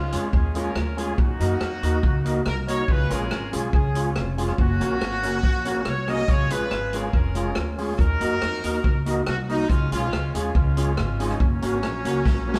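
A straight 4/4 ska pulse at 141 BPM drives this bouncy, upbeat Db major passage, cut from a longer piece, with a swinging big-band drum kit up front in the mix: hi-hat, rim click, a medium-tuned snare and a punchy kick, all with a natural acoustic sound. Underneath, a pizzicato upright bass with steel strings supplies a woody, dark low end, while a clean, fingered electric guitar adds mellow accompaniment in the middle register. A tonewheel organ contributes fat, lightly overdriven stabs through a fast rotary speaker. On top, a clear horn section carries the melody with light vibrato, a punchy attack and a smooth top in a pop-style ensemble sound. The chords cycle through Db, Ebm and Gb, the band plays live together in a stone room with moderate reverb, and a short drum fill arrives at 12.3 seconds just before the passage ends at 12.6 seconds.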